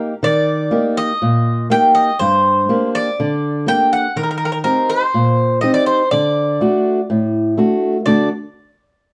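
Greek folk in a brooding, moody vein, this short excerpt cut from a longer piece moves at 123 BPM in a straight 4/4, set in D phrygian dominant over chords of Eb, Gm, Eb6 and D. A dark, fingerpicked steel-string acoustic guitar lays down the accompaniment from the start, and at 0.2 seconds the bouzouki enters up front with the melody, its double strings giving a metallic, picked tone touched by octave doubling and a plate reverb. Both instruments sit close in a moderate studio room, lending the brief passage an intimate, shadowed character.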